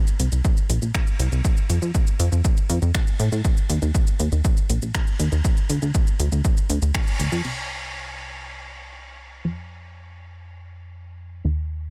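Melancholic yet driving, this short cut from a longer melodic techno piece moves in a straight 4/4 pulse with light reverb around it. An up-front electronic kick drum, punchy and analog with the character of a large room, anchors the groove until about 7.0 seconds. Beneath it, a deep house drum kit adds crash cymbal, finger snaps, shaker and metallic hats, its layered, tape-warm sound sitting well back in the mix. The plucky analog bass carries the piece from start to finish, a funky, evolving blend of sawtooth, square and triangle tones with ring modulation, a fast-attack filter pluck and sidechain pumping, ranging from D1 to A2. A band accent lands at 6.9 seconds, and after the drums fall away the bass holds the closing section on its own.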